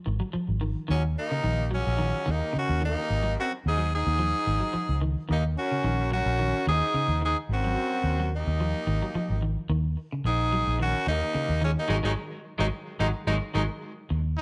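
Heard in light reverb and small-room ambience, this driving, funky afrobeat passage, cut from a longer piece, sets a bright, picked electric guitar's arpeggios, shimmering with lush chorus, over a round, foam-muted vintage fingered bass up front, while from 0.9 s a raspy, forceful tenor saxophone carries the melody with light vibrato, joined by a clear, distant trombone with scooped notes and a gritty baritone saxophone in the background on second lines, before a band accent from 11.9 s and a single brilliant trumpet note at 14.4 s.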